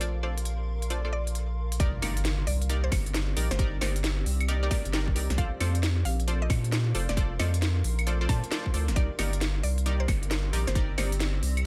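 A moody, skippy two-step garage excerpt opens with a woody, FM-style mallet pluck melody and punchy, bright sawtooth chord stabs, both with chorus and tape echo, over a thick, saturated sub bass with sidechain pumping, a cloudy, detuned granular pad in the background, and a tape-warm drum kit of claves, crisp hats and a cracking snare, until a tight electronic kick and a very quiet impact arrive at the drop at 1.8 seconds.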